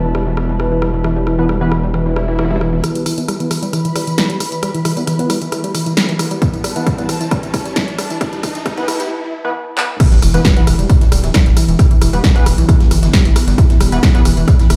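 Relentless and hypnotic, this driving peak-time techno cut from a longer piece runs at 134 BPM in straight 4/4, in E minor with tuning at A4 = 437 Hz. A round, detuned analog pluck carries the riff throughout with chorus, dub echo and sidechain pumping, while an edgy sync-sweep polysynth with a nasal sweep adds chorused, delayed stabs. A punchy, dry analog drum machine supplies hi-hat, snare, rim click, handclaps, tambourine, ride and crash, with its hats, percussion and cymbals pumping, joined at the start and after the drop by a very quiet, compressed breakbeat sampler-style kit recorded in a large room. A gritty, distorted synth bass sits up front, and underneath hover a very quiet, swarming and warbling drone and an ethereal, airy pad in the background that drops out at 9.1 seconds. After an opening swell, a build-up from 2.8 seconds brings a riser and filter sweeps on the synths, while a dry, punchy electronic kick enters at 6.4 seconds. 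A drum fill leads into the drop at 10.0 seconds, marked by an impact, where the breakbeat kit and bass return, with the drone following at 12.0 seconds, all heard as if played on a big sound system in a bare stone room.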